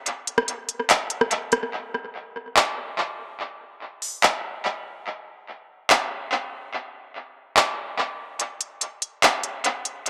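Hip hop at 144 BPM in 4/4 with a half-time feel, this short cut from a longer piece carries a melancholic, ethereal mood. A trap drum kit, electronic and produced, plays alone from 0.1 seconds to the end, with handclaps, crisp hi-hats and rim clicks sitting up front. Tape echo trails the drums, and a wet spring reverb with a 2.6-second decay gives the echo-heavy mix a hazy, floating space. The kick drops out around 0.9 seconds and returns by 1.7 seconds, then falls away again for the closing stretch from 8.4 seconds, leaving the claps, hats and rim clicks to ring into the reverb.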